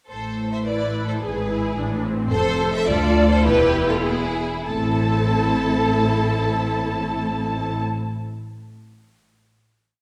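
A quick classical-period movement for string orchestra in A minor, restless and urgent, runs at 98-109 BPM in a straight 2/4 before slowing from 1.8 s and settling on a final chord at 4.6 s. A clear violin section carries the melody while a rich, distant violin section doubles the tune in thirds and at the octave; the expressive viola section enters at 0.7 s with a counter-melody and sustained chords. A lush, close cello section holds the sustained bass, smoothly doubled by the double basses, all set back in a wet scoring-stage reverb.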